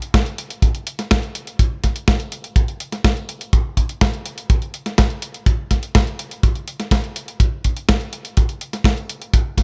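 Nostalgic and danceable, this short italo disco cut from a longer piece is built entirely from drums in a straight 4/4 feel. A clean 12-bit digital drum machine opens at 0.0 s with hi-hat and a medium-tuned snare, its sampler-style electronic tone carrying a tape-warm grain. An acoustic kick drum joins at 0.1 s, tight and natural, with the character of a small room. Both parts sit up front, the kick the louder of the two. A studio reverb lends the groove some space as it runs steadily through a single section to 9.6 s.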